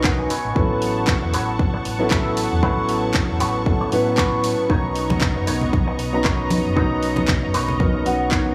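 A dark, mellow baby grand piano sits up front with sidechain pumping and dub echo in this sunny, feel-good nu-disco excerpt, joined by a lush, detuned sawtooth pad with chorus and phaser, a twangy envelope-filtered guitar riff with dub echo, a round fingered bass, a punchy electronic kick and a house kit of handclaps and hi-hats in small-room ambience, hard-hand congas from 5.1 to 7.9 s, and clean electric guitar fills at the opening and from 7.3 s.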